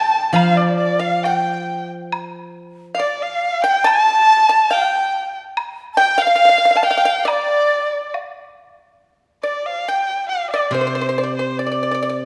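Tender and graceful, this Chinese traditional chamber excerpt in D yu mode drifts in a rubato 2/4 around 70 BPM: a boxy, up-front bowed erhu sings the melody with vibrato and portamento, an airy large dizi with a buzzing membrane weaves a background second line until 8.1 s, a bright, dry fingerpicked pipa adds its own percussive second line, a silvery, ringing steel-string zither gives low accompaniment from 0.3 s and returns at 10.7 s, and a close woodblock ticks beneath, all set in a wet recital hall reverb.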